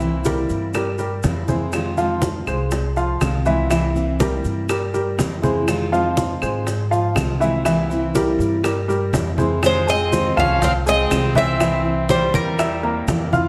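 Latin son with a guajira lilt, this sultry fragment moves at 122 BPM in a straight 4/4 in F minor, swaying between C7 and Fm7. A bright, worn baby grand sits up front with arpeggios, its action noise audible and its notes short. Beneath it are a full-bodied fingerpicked jumbo steel-string guitar and a dark, thumpy pizzicato upright bass on gut strings. Grainy, compressed maracas shake along, while low-tuned congas with thick skin and hard hands, round bongos and woody claves fill the background, with the bongos joining at 0.3 s and the claves at 0.7 s. At 9.6 s a trumpet with vibrato enters in the background on a second line, and moments later the metallic, double-strung Cuban tres takes the melody up front. A moderate large-studio reverb gives the passage a roomy ambience, and it is cut from a longer piece.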